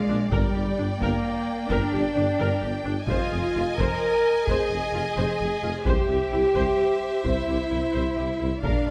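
Heroic and relentless, this short cut from a longer cinematic film score moves at 87 BPM in a rolling 12/8, its harmony passing from Gm to Fm7 and settling on C. A lush violin section carries the melody with a focused, vibrato-rich tone, while a second violin section sings a softer-edged line beneath it, gliding between notes with expressive portamento. A warm viola section fills the middle with its own sliding accompaniment, and a mellow French horn section sustains chords with light vibrato, standing out as the most prominent voice in the blend. The low end is built from a smooth, even cello section, a deep double bass section and a present tuba with a soft attack, all bowed or breathed into a dense foundation. A taiko ensemble struck with hard sticks enters at 0.3 seconds, driving the music forward, and the whole orchestra sits in a wet recital hall reverb that gives it a grand sense of space.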